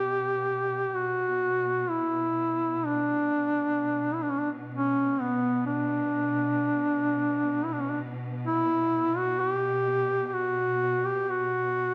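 A duduk and a bowed string section sound together from the very start, the strings holding a low B2 drone beneath the reed's voice. This is a Caucasian folk lament in B minor, solemn and full of longing, moving at a slow 64 BPM in 4/4 with a free, rubato feel. The warm duduk sits up front as the solo melody, ranging from B3 to G4 in a folk style marked by vibrato and scooped notes. Behind it, the studio string ensemble is bright, focused and lush, its sustained tone also carrying vibrato and sitting well beneath the reed. A moderate scoring-stage reverb with a 1.5-second decay gives the parts a sense of space. Both parts play throughout the 11.9 seconds of this passage, which is cut from a longer piece.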